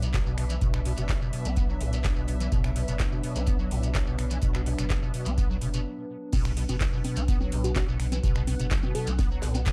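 Acid house, driving and trippy, where a squelchy, resonant acid bass riff with overdrive, grit and analog delay rides over a thick saturated sub bass, a deep tape-warm electronic kick, a booming analog drum machine with congas, snaps, handclaps, crash and metallic hats, a grainy shekere and a very quiet, dry 70s kit, while a warbling lo-fi pad with sidechain pumping and distant, dark bowed chamber strings sit behind, and after a break at 5.9 seconds and the drop at 6.3 seconds a sparkling, bell-like FM electric piano enters at 7.6 seconds, all in a dark, warm production with little reverb.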